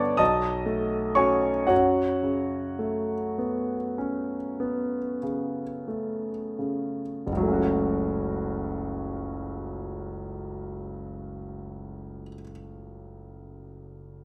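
Wistful and nocturnal, this short excerpt from a longer impressionist classical piece features a clear, intimate concert grand piano playing solo from 0.0 to 14.2 seconds in F# minor, its deep bass, audible action noise and long sustain sitting up front in a moderate recital hall reverb as the rubato 9/8 motion, at roughly 27-46 BPM in dotted quarters, slows through the opening section before a B9 and F#madd11 give way to F#m at 7.3 seconds.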